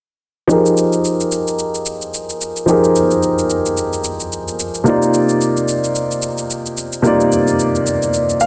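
Densely limited and set in a small, moderately reverberant room, this soulful, deep amapiano excerpt in F minor at 110 BPM, with a swung sixteenth-note feel, places a clear, smooth, vintage grand piano up front, its short-sustained chords moving from Fm11 to Cm11 at 4.9 seconds under a filter sweep and closing with a brief fill at 8.1 seconds, while a tape-warm electronic shaker sits further back.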